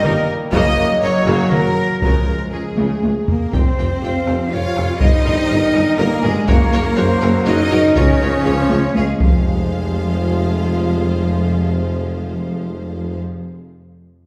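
Compressed, saturated taiko ensemble struck with hard sticks drives this dramatic, relentless epic orchestral film-score passage in F minor at 121 BPM in 3/4, adding fills ahead of new sections until the drums stop at 10.2 s, while a focused, lush symphonic violin section and a pure, bright flute group (ending at 9.2 s) carry second lines beneath a smooth chamber violin melody, a viola section supplies accompaniment, mellow French horns and warm trombones hold sustained chords, and clear cellos, distant double basses and a tuba anchor the bass, heard from further back in a reverberant scoring stage.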